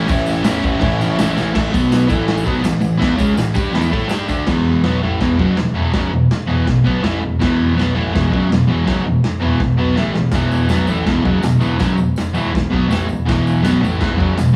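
An up-front, double-tracked overdriven electric guitar drives this rowdy, raw garage rock passage at 164 BPM in a straight 4/4, picking a riff that spans E2 to A4 and moves from A through A5 and B5 to an E5 chord at 4.5 seconds. Beneath it, a very quiet concert grand piano carries the bass line in its deep low register, smooth and vintage with long sustain. The drum kit sounds gritty and saturated, with a punchy kick, medium-tuned snare, dark cymbals and a rolled-off top, and it pumps in its small room; fills land at 1.4 seconds and between 9.6 and 10.3 seconds. A jingly tambourine sits close and dry in the background, dropping out at 4.4 seconds and returning at 10.3 seconds. The band plays live together in one room with moderate studio reverb, and the passage is cut from a longer piece.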